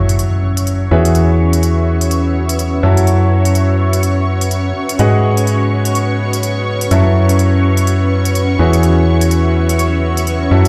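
Soulful and energetic, this piano house cut moves at 125 BPM in 4/4 with a swung sixteenth-note feel, cycling through F#m7, E69 and G#m7 chords. A clear, woody upright piano riff with long sustain and dub echo sits up front beside a dark, hollow, organ-like FM bass with a fast attack. Beneath them a bright, silky string pad with ensemble chorus and phaser holds sustained chords, a granular cloud pad drifts in at 0.4 seconds with a blurred, evolving texture, crisp electronic hi-hats tick along, and a background electronic impact sounds in the opening 1.2 seconds, all heard as if through a big sound system in a bare room with large studio reverb.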